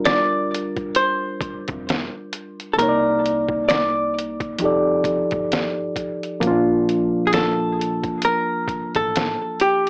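Nostalgic and cosy, this short lo-fi hip hop excerpt sways at an unhurried pace with a swung sixteenth-note feel over a progression from Gm7 through Cm9 and F13 to Bbmaj7. Up front, a reedy electric piano carries the accompaniment, lightly overdriven and heard through its built-in speakers, colored by cassette tape and plate reverb. The melody comes from a dark, clean archtop guitar, picked and compressed with a hollow-body tone and its own touch of plate reverb, entering at 0.1 seconds. Beneath them, a woody pizzicato upright bass sits in the background with a thumpy, steel-string sound and drops out at 9.3 seconds. A sampler-style trip hop kit of hi-hat, thumpy kick and medium-tuned snare sounds compressed, pitched down and muffled, and the whole mix has a modest small-room ambience and the character of a small speaker.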